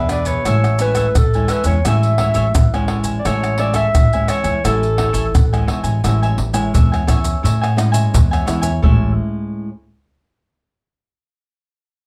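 Playful and festive, this excerpt of samba and choro features a warm solo clarinet in a distant, roomy classical style carrying the melody over an Amaj7 chord until it drops out at 5.7 s. Crisp picked cavaquinho and a small, fingerpicked nylon-string guitar fill in the accompaniment, while a dark, woody pizzicato upright bass on gut strings thumps underneath. Maracas, pandeiro, tamborim and a tight surdo sit close, dry and up front, all set in a moderate studio ambience heard from further back in the room.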